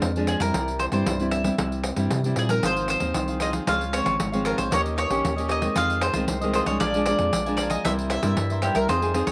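Yearning and nostalgic, this short excerpt from a longer samba and choro piece moves at 115 BPM in a straight 4/4, with a woody, double-strung mandolin carrying the melody over a full-bodied, fingerpicked nylon-string guitar whose finger squeaks can be heard. A round, dark analog bass and a jingly pandeiro played with hard hands hold the low end and rhythm, while a crisp, bright cavaquinho with slapback echo joins the accompaniment at 2.6 seconds. The outdoor recording is dry, and the harmony runs through chords such as Dbmaj7, Eb7 and Fm7 before arriving on C7.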